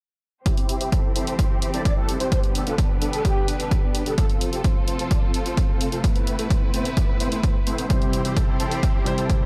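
Punchy, up-front electronic kick drum and layered hi-hats open this brief cut of uplifting, anthemic festival progressive house, joined at once by a huge, detuned supersaw riff and a lush, close string section holding sustained chords. Both the strings and the supersaw pump against the kick through sidechain compression and sit under a low-pass filter, with a filter sweep moving across the strings throughout, while delay trails the thick, compressed riff. From 1.7 to 4.3 seconds a breathy, flute-like synth lead carries a short melody with vibrato, chorus and delay. The harmony moves from C through G and F to an Amadd9 before returning to C, and at 7.9 seconds a dark, mellow grand piano with audible action noise and short sustain enters as accompaniment, also pumping and echoed by delay. The production is dark and warm, with light small-room reverb giving the drums a compact space.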